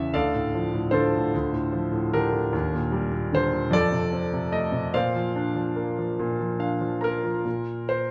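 A warm concert grand piano, up front with a deep bass and a natural tone, carries this calm, tender classical miniature alone, a short excerpt cut from a longer piece. It moves slowly at 49 BPM in an unevenly pulsed 6/8 with free rubato, drifting through Bb major harmonies from Dm and Ebmaj7 to F6 before a piano fill at 6.2 seconds settles onto Bbsus2 at 7.5 seconds. A recital hall reverb wraps the sound in a soft, glowing space.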